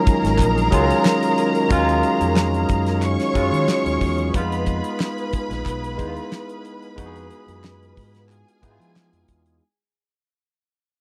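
Lush, expressive bowed strings sit up front in this cinematic, smooth slice of 1970s-style soul, carrying a second line with vibrato and a silky top. A bright, barky electric piano through a combo amp plays the accompaniment, its clean tone bathed in lush chorus, while a percussive tonewheel organ holds sustained chords in the background, lightly overdriven with chorus vibrato and a slow rotary speaker. An amped, punchy fingered bass with a gritty edge and a damped drum kit with a fat snare, tight kick and hi-hat enter at 0.1 seconds, joined at 0.4 seconds by crisp, compressed group handclaps tucked behind. The groove moves at 91 BPM in 4/4 with a light sixteenth-note swing, shifting from Ebm11 to Fm7b5 at 4.3 seconds. The sound is dry and close, like a vintage studio session, and the whole passage fades out as a cut from a longer piece.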